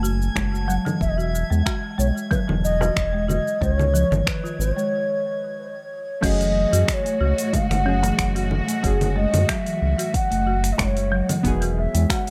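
A lightly swung 4/4 groove at 92 BPM drives this mystical, meditative organic downtempo piece in F# dorian, built on an afro-pop drum kit of congas, finger snaps, shaker, crash and metallic hats, a deep electronic kick, a small frame drum in the background, and a round analog bass with sidechain pumping up front. An airy bamboo bass bansuri carries the melody over woody marimba arpeggios under a filter sweep, both trailing dub echo, while a glassy harmonics texture drifts high above until 4.9 s, when a brief break arrives. From 6.2 s a dark chord stab and a distant, bowed chamber string section join with sidechain pumping, filling out an echo-heavy mix with small room ambience.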